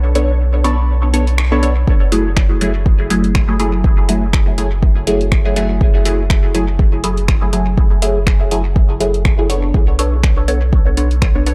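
Swung finger snaps and overdriven hi-hat carry this hazy, deep dub techno excerpt, opening in a break where a barely audible moody pad and a brief warbling, lo-fi pluck in the background drift over muted, detuned chord stabs with phaser and dub echo and a round, soft sub bass, both pumping against the sidechain, until an up-front, overdriven electronic kick arrives at 1.9 seconds under a dry, gritty sound as the chords move from Bm9 to F#m9 and back.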